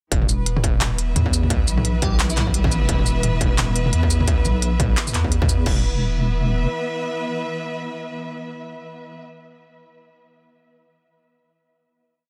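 Dark and cinematic, this short, complete half-time drum and bass piece runs at 173 BPM in 4/4, with a 16th-note swing and tuning set to A4 = 435 Hz. A distorted electronic kick and an industrial kit of smooth closed hats, low toms, shaker, claps and crash drive a sparse half-time beat through the drop, both sitting up front with a small-room character until they stop at 5.7 seconds. Beneath them, a deep, soft wobble bass of triangle and sine tones adds chorus-thickened phrases with a changing wobble speed, while a rich, bowed studio string ensemble holds slowly shifting chords on E5, pumping against the sidechain. Briefly, around 2.0 seconds, a very quiet, airy and dreamy detuned lead slips in with a short answering phrase, its breathy noise layer and moving notch touched with chorus and vibrato. After the beat falls away, the strings carry the final chord to the close, with the wobble bass lingering beneath them until 6.7 seconds, all within a dry, dense and heavily limited modern master.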